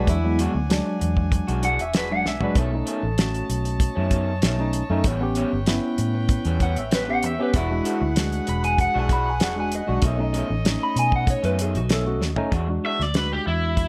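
A phased electric guitar through a small old amp, slightly broken-up and lo-fi, plays a second line over a rollicking, gritty straight-eighth soul blues at 96 BPM in E mixolydian, backed by a second picked guitar on stabs, a clean tine electric piano through its built-in speakers, bright, tight, close-miked horns holding sustained chords with light vibrato, a dark, round, foam-muted fingered bass, and a dry, up-front 70s drum kit with a fat snare, tight kick and rolled-off top that fills at 2.3 and 12.2 seconds, before an overdriven raw garage guitar takes the melody at 12.9 seconds in this short excerpt cut from a longer piece.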